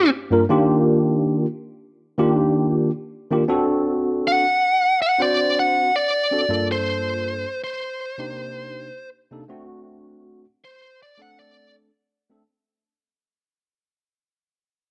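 Mournful and soulful, this slow blues fragment, cut from a longer piece, moves in a straight four-beat feel. A biting, overdriven electric lead guitar carries the picked melody up front in a fairly high register, dressed in plate reverb, and drops out at 11.7 seconds. Beneath it, a bright tine electric piano plays clean, direct accompaniment across a broader range, thickened by ensemble chorus and the same plate reverb. The harmony moves from Ebmaj7 to D7, then through Gm9 and Cm9 before returning to D7. A moderate studio room surrounds the two parts, and the whole passage is fading out from start to finish.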